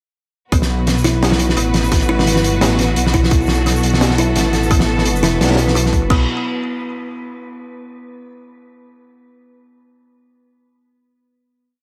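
A sparse half-time beat at 172 BPM drives this tense, spacious drum and bass piece, pairing a hard-clipped, overdriven electronic kick with a crunchy, gritty breakbeat kit of high-tuned snare, shaker, hi-hat and dark crash, launching a drop on a B5 chord at 0.5 seconds. A deep, rumbling detuned saw bass with tube saturation sits up front in chopped phrases, while a distant, lush string section holds sustained chords with sidechain pumping and a woody kalimba repeats a six-step arpeggio through delay that drifts against the bar. From 3.9 seconds a reversed, dreamy swelling texture holds a high note in the background, and the piece settles on a final chord at 6.1 seconds in light studio ambience.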